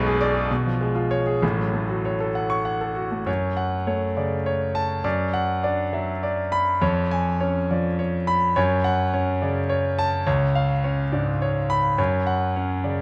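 Agitated and passionate, this short passage from a virtuoso classical piano study in F# minor moves in a rubato 6/8 at 68 BPM, with a solo grand piano heard up front, clear and intimate, its audible action noise and long sustain blooming into a moderate concert hall reverb as the harmony turns around F# minor, B minor and C#7 before settling on a bare F# chord at 12.0 seconds.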